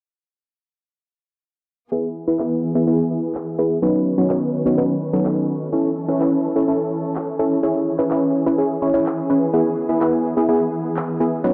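Festival progressive house with a euphoric, uplifting lift, cut from a longer piece, where a punchy, detuned supersaw stab riff sits up front with cassette tape colour, low-pass filtering and digital delay over lush, bowed symphonic strings holding sustained chords with vibrato, layered electronic handclaps joining at 2.4 seconds, a filter sweep running across the whole passage, and the harmony moving through E, Badd9, A and C#m before returning to E.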